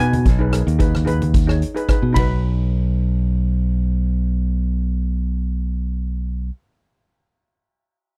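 A carefree, bouncy calypso fragment opens with two steel pans together, a lead pan carrying the melody and lower cello pans filling in the accompaniment, both metallic and shimmering with a boxy small-room color. Underneath sits a bright, direct fingered electric bass, up front and clear, while a street-band drum kit with a boomy kick, dark cymbals, hi-hat and rim click adds a polished, airy drive until about 2.3 seconds. Very quiet, low-tuned congas with a thick-skinned tone and hard hands sit close in the background until 2.7 seconds. The tempo is 110 BPM in 4/4 in B major, with a light swing on the sixteenths, and the harmony moves from G#m/B to B around 2.2 seconds, just before the second section begins around 2.4 seconds. The overall sound is dry and close, like a 1970s studio session, and the fragment is cut from a longer piece, running to about 6.5 seconds.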